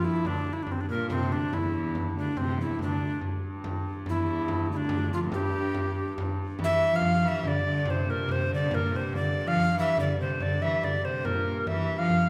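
An airy, up-front tenor recorder with a crisp, chiffy attack and vibrato carries the melody of this ancient, mysterious medieval dance in 3/4 at 142 BPM in G dorian, over a rich, ringing viola da gamba second line with gut-string tone, a distant, nasal hurdy-gurdy drone on G2, and a compressed, saturated frame drum entering at 0.2 s. All of it is set in a wet recital-hall reverb, and the piece shifts into a new section at 6.6 s.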